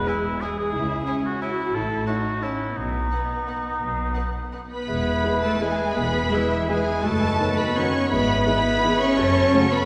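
Heard from further back in a wet concert hall with a faint mains hum, this cut from a festive, sweeping orchestral ballroom waltz in E major sways in 3/4 with rubato at 158-192 BPM. A lush violin section carries the focused melody above a second, expressive violin line, a warm solo oboe, portamento-shaded violas, a clear cello section and a rich double bass section. At 4.7 seconds an airy flute group enters, from 4.9 seconds a distant clarinet and a mellow bassoon join, and at 5.2 seconds very quiet French horns and bright, tight trombones add sustained chords.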